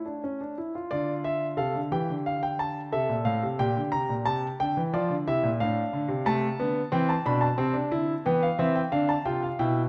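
A straight 4/4 pulse at 90 BPM drives this solemn baroque-style three-part fugue in D minor for solo grand piano, cut from a longer piece, where an intimate, vintage, up-front instrument with deep bass and audible action noise moves from A through Dm, Gm/Bb and back to Dm before settling on Am/C, all within a dark, warm production and a moderate scoring-stage reverb.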